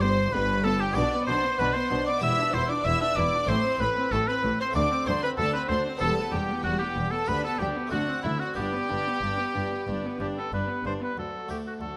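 Classical music in a baroque concerto style, this festive, lively passage moves at 94 BPM in a straight 4/4 in G major, cut from a longer piece. A clear solo oboe sits up front with a light vibrato, carrying the melody between E4 and E5, while a smooth, lush violin section also carries the melody high above it, from E5 to E6. A second, expressive chamber violin section plays a second line in the oboe's own register, and a focused viola section fills the middle as accompaniment. Underneath, a bowed double bass section adds a rich, symphonic foundation, joined by a soft-attacked cello section in the background whose expressive playing includes portamento, while an airy, bright harpsichord in the Italian style plucks accompaniment lines in the background. The harmony moves from G through Bm, Em7, Am and D7 to a cadence back on G at 8.6 seconds before turning to D at 11.2 seconds, all captured with close, detailed microphones and light reverb.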